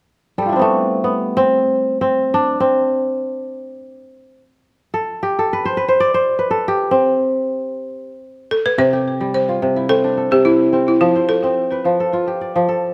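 Close, detailed microphones in a moderate recital-hall reverb frame this joyful, hypnotic west african traditional piece in free time and C major, where an up-front, ringing, fingerpicked kora spins mellow arpeggios from 0.4 s and a woody, buzzing balafon played with hard rubber mallets adds a brief tape-echoed melody from 8.5 s to 11.8 s as the harmony moves from C to F.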